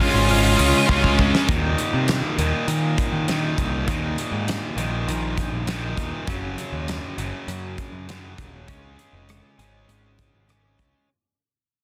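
The octave-fuzz lead guitar opens with a dark, fuzzy melody over a dense wall of picked guitars, one crunchy and pushed to the background, another a scooped, double-tracked high-gain layer, while an up-front overdriven guitar riffs throughout. This brief excerpt of quiet-loud alternative rock in Eb minor moves at 100 BPM in a straight 4/4, with a growling, overdriven picked bass and a big rock drum kit with a fat snare and punchy kick driving a cathartic, dark mood. After a drum fill at 0.9 seconds, the fuzz lead drops out at 1.1 seconds. The heavier guitars follow at 1.5 seconds, as a very quiet, twangy twelve-string electric guitar enters with compressed arpeggios, and the dry, heavily limited mix fades out over the remaining seconds.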